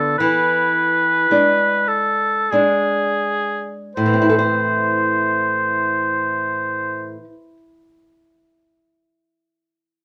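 This romantic duo for oboe and classical guitar is a brief, yearning and elegiac passage cut from a longer piece in A minor, moving in a slow, rubato 3/4 at roughly 40-58 BPM. The mellow oboe carries the melody up front in a classical style, its soft attack, smooth top and light vibrato keeping the line tender within a narrow range from G#4 to C5. Beneath it, the nylon-string guitar is fingerpicked as accompaniment, small and acoustic in tone, with audible finger squeaks that bring it close. The harmony rests on an E7 before resolving to A minor at 4.0 seconds, and the tempo slows over that opening stretch. Played live together in one room with light reverb, the oboe falls silent at 7.1 seconds and the guitar rings on briefly until 7.6 seconds.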